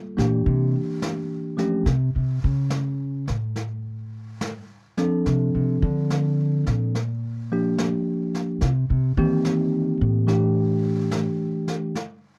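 The upright bass carries the solo in this short, intimate jazz ballad, played pizzicato on steel strings with a woody tone that sits up front from 0.2 seconds. A bell-like tine electric piano supports it with clean, bright accompaniment, heard directly and close from the very start. Brushed snare drum and snare drum keep a gentle swung pulse in 4/4 from a distance, their medium-tuned, roomy sound warm and rolled-off at the top, sitting well beneath the other two parts. The harmony moves through Em7b5, A, Dm7, Gm7 and C7 before arriving at A7sus4, and the whole ensemble is tuned slightly below standard pitch. With little reverb and a romantic mood, the piece feels like a close, private moment cut from a longer performance.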